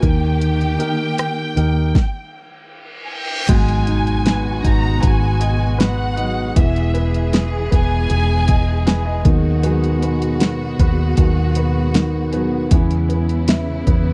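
Longing and emotional, this slow 78 BPM pop ballad in G# minor sets a lush, distant violin section singing the melody with portamento and tape echo until 9.2 seconds over a polished concert grand piano with audible action noise, smooth sustained string chords, very quiet fingerpicked nylon-string guitar arpeggios, a round, foam-muted electric bass and an up-front deep house drum kit with a deep kick and fat snare, while a stop at 1.9 seconds gives way to an electronic reverse cymbal and impact, a piano fill arrives at 8.5 seconds, and the sound stays dry and close, like a 1970s-style small-room studio recording.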